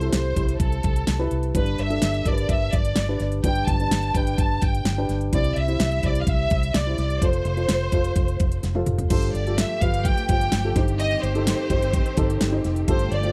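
Piano-driven pop at 127 BPM in a straight 4/4, cut from a longer piece and tuned to A4 = 443 Hz, with a hopeful, warm mood. It is built on a dark, woody upright piano with short sustain, a round, punchy, foam-muted electric bass, and an up-front, produced drum kit with a knocking kick, fat snare and crisp hats. A distant, lush violin section carries the vibrato-rich melody. After a drum fill at 8.6 s, a bowed string section with portamento and a smooth top slips in behind at 9.1 s as the chords turn to Fadd9/G and Cm/G, all set in a dry, close 1970s-style studio sound.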